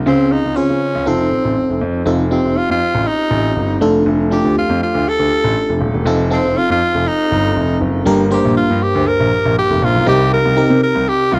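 A raspy, gritty tenor saxophone carries the melody up front with light vibrato and tape echo, forceful yet smooth on top, in this dramatic, nostalgic 1980s-style pop excerpt at 120 BPM with a gentle 16th-note swing. A glassy, bell-like FM electric piano with chorus and phaser supplies the accompaniment, while a concert grand piano holds down the bass with deep, intimate tone and audible action noise. The chords move from Dbmaj7 through F7 and Gm to Cm7 at 10.1 seconds, captured in a dry, close studio sound with a short booth ambience.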